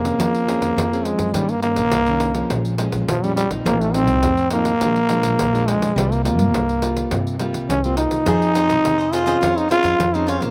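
A raspy, growling trombone carries the bittersweet, yearning melody up front with vibrato, scooped notes and a slapback echo, over a dark, fingerpicked nylon-string guitar, woody pizzicato upright bass and jingly pandeiro in this F minor samba and choro excerpt at 104 BPM, with a crisp, picked cavaquinho joining at 8.3 seconds in a dry outdoor setting.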